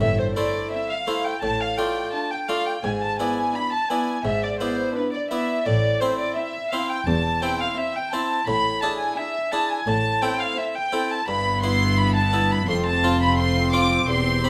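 A solo violin leads this brilliant, lively baroque-style concerto movement, its bowed line carrying vibrato, a soft attack and expressive portamento, heard up front yet with a distant quality as it moves between B4 and D6. Alongside it, an up-front harpsichord with a bright, airy, plucked character supplies the accompaniment from the start, while a symphonic violin section shares the solo's range as a lush, focused second line in the background. From 0.7 s a very quiet second violin section and a smooth, even viola section join, adding further background layers of bowed, vibrato-rich string tone. The bass is anchored by a close cello section and a dark, soft-edged double bass section, both bowed with vibrato. Set at a steady 85 BPM in 4/4 and A minor, the passage moves through chords such as Am, Dm/A, E7/G# and Em/G before landing on F5, all within a moderate recital hall reverb in this short section cut from a longer piece.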